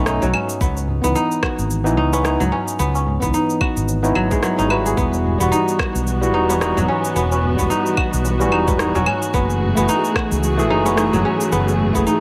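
Earthy and warm, this organic downtempo excerpt moves at 110 BPM in 4/4 with a gentle swing on the sixteenths. A crisp, up-front kora spins fingerpicked, ringing arpeggios through tape echo and a touch of vintage 12-bit sampler grit, while a bright, barky overdriven tine electric piano, pushed through a combo amp, supplies gritty accompaniment that pumps with sidechain compression and trails its own tape echo. Underneath, a dark, round fretless electric bass with analog chorus holds the low end, joined by a soft, tape-warm electronic kick from 0.6 seconds, electronic rim clicks, cabasa and claves, and a low-tuned, short-ringing tabla sitting in the background. At 5.0 seconds a lush, distant string section enters with bowed, vibrato-rich sustained chords that also carry sidechain pumping. The harmony drifts from B7 and C#m7 through Emadd9 to F#m9, and the whole mix sits in a moderate recital hall reverb.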